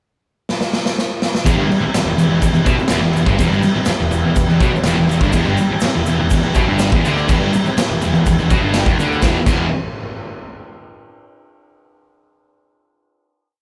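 Gritty and menacing, this short garage rock piece in E minor at 124 BPM opens with a raw, punchy drum fill at 0.5 seconds before a thick, double-tracked fuzz guitar riff takes over at 1.4 seconds, doubled by a driving overdriven electric bass, while a mellow overdriven combo organ holds triad chords with light vibrato and slips in short fills, a grainy egg shaker sits in the background, and the band, heard live in one room with light reverb, closes on a final chord.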